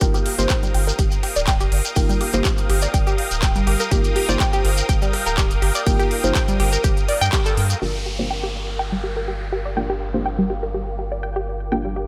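Opening on a punchy, up-front electronic kick, crisp big-room handclaps and hi-hats, a very quiet, gritty breakbeat kit of hi-hat, ride and high-tuned snare, and a grainy, close shekere, this dreamy, emotional progressive house excerpt in G minor at 123 BPM pumps a round analog bass, nasal detuned analog pluck arpeggios with chorus, phaser, delay and a sweeping filter, soft deep chord stabs, and an evolving, filtered supersaw swell through an Ebadd9 chord; the drums and shekere drop out near 7.8 s as a downlifter enters, the harmony shifts to Gm7, and the supersaw's filter sweeps over light reverb.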